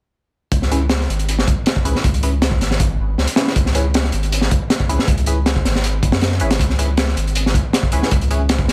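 Dark and atmospheric, this drum and bass excerpt in C# minor runs at 158 BPM on a C#m7 chord, with a crunchy, gritty breakbeat kit, punchy kick and high-tuned snare up front, a thick, deep saturated sine sub bass, and a nasal, band-passed sawtooth chord stab entering at 0.7 seconds with a filter sweep, phaser and dub echo, all set in studio reverb.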